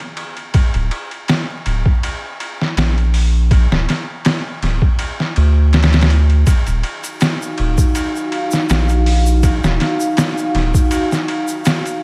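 A round, deep analog bass sits up front from 0.7 seconds, its sine- and triangle-based tone striking with a fast attack and holding each note in the low register. Already running from the very start, a compressed, pitched-down sampler-style drum kit grinds through overdrive, pairing a thumpy kick and medium-tuned snare with hi-hat and ride cymbal in a gritty, swung 4/4 at 81 BPM. This dark, melancholic trip hop passage in Eb harmonic minor moves from Bb/D to Ebmadd9, with a quiet acoustic tube shaker joining at 6.5 seconds with a small-room character. At 7.4 seconds a moody ambient pad fades in slowly, its detuned sawtooth unison, sub octave, wave-folding and ring modulation thickened by chorus and its own reverb. The rest of the mix stays dry under a layer of vinyl crackle, and the clip is cut from a longer piece.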